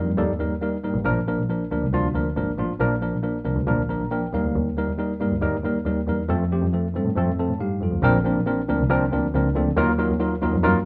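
This short clip sounds like a band playing live in one room, with a moderate studio reverb around the players. It is uptempo 1960s-style soul in Bb major at 138 BPM in a straight 4/4, and the mood is warm and uplifting. Up front, a worn tine electric piano, slightly out of tune yet clean and heard through its built-in speakers, carries the accompaniment and adds short fills at 3.7 and 7.2 seconds. Beside it, a single bowed double bass with a nasal, reedy gut-string tone in period style holds down the low end. The harmony moves through Eb, Bb and F before shifting at 8.0 seconds to a new passage of Bbadd9 and Ebmadd9 chords, where the clip breaks off mid-piece.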